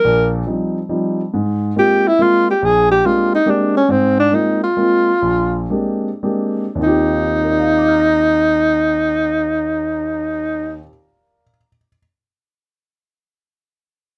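Jazz waltz in Eb major, sophisticated and relaxed, swinging in 3/4 at 98-141 BPM and slowing between 3.9 and 6.8 seconds, cut from a longer piece. An up-front alto saxophone carries the solo melody with vibrato, scooped notes and a smooth top until 10.8 seconds, while a concert grand piano with deep bass accompanies through 12.0 seconds over Eb69, Ab69 and Bb13 harmonies. Close, detailed microphones and light reverb shape the sound.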